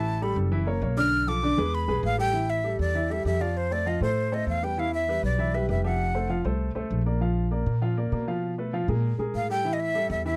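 A breathy, vibrato-laced jazz flute opens with a solo over a natural-sounding baby grand piano and a woody, plucked upright bass, setting a driving, sophisticated Afro-Cuban jazz excerpt in A minor at a brisk 197 BPM, with the up-front flute dropping out at 6.4 seconds and returning at 9.4 seconds, all captured in a dry, close 1970s-style studio sound.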